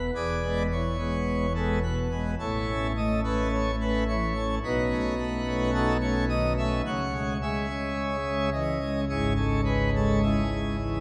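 A wet church reverb with a long 3.4-second decay surrounds this recording, giving the sound a spacious, resonant halo. It is a short classical fragment in a chorale style, cut from a longer piece, with a majestic yet serene mood. A solo pipe organ on a full plenum with mixtures plays throughout, sitting up front with a brilliant, romantic voicing that spans from a deep E1 up to F#5. The tempo is a slow, stately 54 BPM in a straight 4/4, tuned to A4 = 439 Hz. The harmony moves unhurriedly from E to A, then to B9, and comes to rest on C#m near 6.8 seconds, lending the close a reflective shade.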